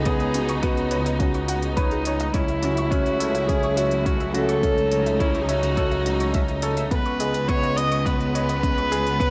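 This intimate, cinematic piano and strings electronica opens at once on a dark, airy viola melody with a touch of delay. Beneath it sit a woody, slightly detuned upright piano riff, also delayed, and lush sustained chords from a distant string section, while an up-front double bass section holds a C#2 bass; both the strings and the bass pulse with sidechain pumping. From 0.1 seconds a lo-fi, warbling pluck adds chorused, delayed arpeggios in the background, and a deep layered electronic kick and smooth hi-hat sit in studio reverb, as the harmony moves through Badd9/C#, F#m7/C# and G#m/C#.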